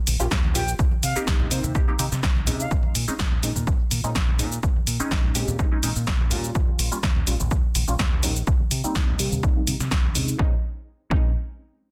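A punchy electronic kick drives a lightly swung 125 BPM groove in 4/4 alongside an up-front, tape-warmed analog drum machine with snare, hi-hat and cabasa pumping against it, and very quiet, close congas and maracas underneath, setting a sensual, groovy filtered disco house mood in Bb dorian. A deep, dark and round fingered dub bass and a detuned sawtooth-and-square polysynth comp with a plucky filter, chorus, phaser and cassette-tape grain both pump and breathe under low-pass filtering around Eb9, Cm7 and Bbm11 chords. A distant, pure silver concert flute with crisp attack, sampler grit and delay sings a short expressive phrase from 0.6 to 2.7 seconds, after which a filter sweep moves across the bass until 10.4 seconds in this dense, heavily limited, nearly dry mix.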